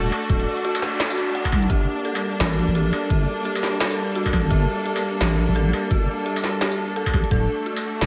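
This dark, heavy half-time drum and bass excerpt in G harmonic minor runs at 171 BPM with a swung sixteenth feel. It opens with a rich, bowed string section holding smooth sustained chords that pump against the sidechain, while an eerie, inharmonic FM synth bell traces decaying arpeggios through chorus and analog delay. Underneath, a deep wobble bass built from triangle and sine tones sits up front, compressed and thickened with chorus. An industrial drum kit of clanging snare, crisp hats, struck metal and tambourine arrives at 0.1 seconds, and a knocking, overdriven electronic kick joins at 0.3 seconds. A faint noise sweep passes in the background, while the harmony moves from D to Gmadd9 and back to D. The whole mix is dreamy and soaked in a lush hall reverb.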